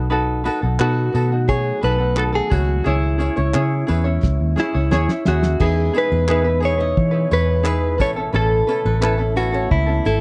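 Acoustic pop in E major at an easy-going 88 BPM, this sunny excerpt pairs a fingerpicked ukulele and a round, foam-muted fingered electric bass from the start, joined within the first second by a thuddy cloth-damped drum kit with a fat snare, tight kick, handclaps and tambourine, fingerpicked flamenco guitar arpeggios in the background, a very quiet glassy FM pad, and an up-front clean electric guitar melody with spring reverb, all in a dry, close 1970s-style small room, with a drum fill at 4.2 seconds leading into the move to Emaj7 at 5.6 seconds.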